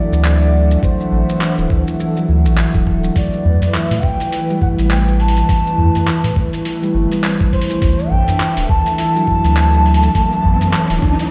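Hypnotic and mystical, this organic downtempo excerpt at 103 BPM sets a reedy bass bansuri melody with delay over thumb-plucked concert harp arpeggios, an airy detuned pad with chorus and sidechain pumping, a deep, round sub bass up front, a gritty, tape-warm sampler-style kit of handclaps, hi-hat and shaker with a thumpy electronic kick, a small udu from 3.5 seconds, a barely audible bronze singing bowl, and a background riser from 8.9 seconds, all heard in a bare stone room as chords move from D7 to Amadd9 and back.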